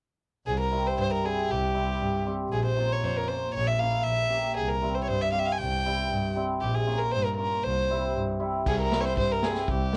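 A straight 2/4 pulse at 117 BPM drives this festive, soulful klezmer excerpt in C phrygian dominant, cut from a longer piece and tuned to A4 = 439 Hz. A single violin carries the melody from 0.5 seconds, close and up front, its rich tone softened by an airy sul tasto bow, light vibrato and a gentle attack. Beneath it, a bowed double bass plays the bass line with a smooth, even sound and its own vibrato, while a hammered cimbalom enters at 0.7 seconds with a mellow, shimmering, ringing accompaniment. The harmony moves between C and Bbm, and at 8.7 seconds the section repeats as a swinging big-band drum kit joins with crash cymbal, a punchy kick and a medium-tuned snare in a natural studio room. A moderate studio reverb surrounds the ensemble, and the whole recording carries the worn, warbly pitch drift of old cassette tape.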